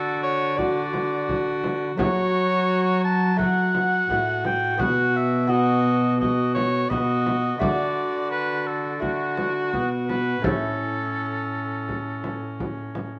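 Courtly and stately, this renaissance-style consort dance moves at a straight 85 BPM in 4/4, tuned to A4 = 439 Hz and cut from a longer piece. A clear, up-front solo oboe with light vibrato carries the melody over a rich, distant bowed viola with a nasal gut-string tone, a reedy period-style cello holding the bass up front, and a delicate fingerpicked lute with doubled gut strings in the background. A deep, vintage, band-limited frame drum enters at 0.6 s, and a moderate stone-room reverb surrounds the consort as the chords move from D through F#m and B back to D, then to A.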